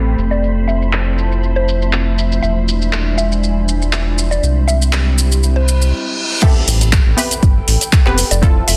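A round, deep analog bass sits up front in this smooth, late-night deep house excerpt, pumping beneath a warbling, nostalgic tape-like pad, an airy, breathy pad and a silky string pad that stops at 5.9 s, while a drum kit with metallic hats and a woody mallet-like synth pluck with phaser and dub echo play on as a reverse cymbal leads into the drop at 6.4 s. There an impact hits, and a layered electronic kick drum and a muted, detuned dub chord stab with tape echo enter over a filtered, heavily limited master.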